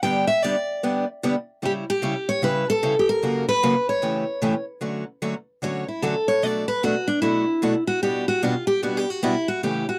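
Swinging and playful, this jazz clip moves at 150 BPM in a lilting swung 4/4, with a bright, fresh-stringed picked concert steel-string acoustic guitar carrying the melody up front over a boxy picked parlour steel-string guitar's accompaniment, the lead stepping out for a solo at 4.8 s as the harmony settles into D major, all captured in a dry, close 1970s-style studio sound touched with light reverb.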